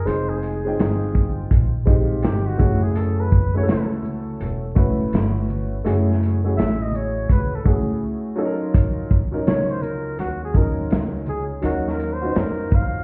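Cool and mellow, this swung jazz-hop fragment at 83 BPM features a flugelhorn soloing with scooped notes over pizzicato upright bass, a dark, slightly detuned upright piano with audible action noise, a lo-fi vintage drum kit with a tight kick, and very quiet, bright tube shaker and congas, all heard as if through a wall with club reverb and vinyl crackle, and a brief break arrives at 8.0 seconds.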